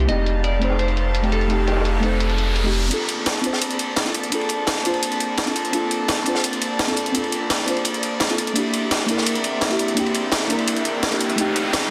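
A mellow, warbling chord stab underpins this lush liquid drum and bass fragment, its detuned, vintage tone softened by chorus, cassette-tape colour and digital delay, with a filter sweep shaping it through the build-up from 2.9 seconds. Alongside it, a dark chamber string section holds floating, distant bowed chords played sul tasto, while a clean, picked electric guitar with delay carries a brief melody only in the opening 2.7 seconds. A round, deep sine sub bass sits up front through the first 2.9 seconds, then drops away as the music moves from F9 to Bbmaj9 and on toward C9. Two breakbeat kits drive the straight 4/4 groove: a compressed, pitched-up sampler-style kit with a high-tuned snare and filtered hats, and a saturated acoustic kit with dark ride cymbal, a medium-tuned snare and a rolled-off top. An electronic riser appears twice, and the whole sits in a moderate recital-hall reverb with a dense, heavily limited modern master.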